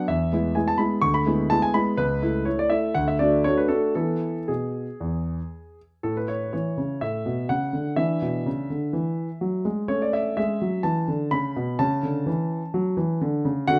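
A concert grand piano plays alone from the very start of this playful, elegant classical-period sonatina, a fragment cut from a longer piece. The instrument sits up front with a smooth, vintage character, a deep bass and a short sustain, ranging from C#2 up to C#6. The playing is in 4/4 with a rubato feel, giving the phrases a gently flexible, graceful lilt. The opening phrase moves from E through E7/D, A/C# and D before returning to E, and at 6.0 seconds a new section settles onto A, passing through E7 and A again before ending on A/C# at 11.8 seconds. Light reverb and a dark, warm production lend the recording a soft, intimate glow.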